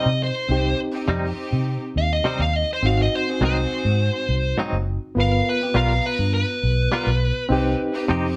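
A smooth, dark overdriven lead guitar takes a soloing role up front in this brooding, soulful blues fragment, picked in a straight 4/4 at 103 BPM in C harmonic minor. Beneath it, a round, punchy foam-muted electric bass sits close and amped, while a twangy, compressed clean guitar, recorded direct, adds bright picked stabs with tremolo. A reedy electric piano played through its built-in speakers fills out the accompaniment, also with tremolo. Entering at 0.5 seconds, a distant bowed string section holds lush, biting sustained chords with vibrato. The band sounds like it's playing together in one room with moderate reverb, moving from Cm through Ab7 and G7#9 before settling back on Cm at 7.5 seconds.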